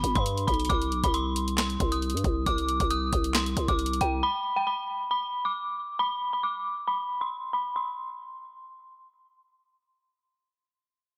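Dry and close, this excerpt from a longer trap and hip hop piece moves at 136 BPM with a half-time feel in C harmonic minor, its mood melancholic and menacing. An eerie, inharmonic FM synth bell carries the melody with chorus and a filter sweep, over a growling, buzzy 808-style bass and an electronic trap kit of knocking kick, sharp snare, bright hi-hats and handclaps, as the harmony moves from G to C minor. The drums and bass drop out by 4.2 seconds, and the detuned bell plays alone, its long release ringing until 9.0 seconds.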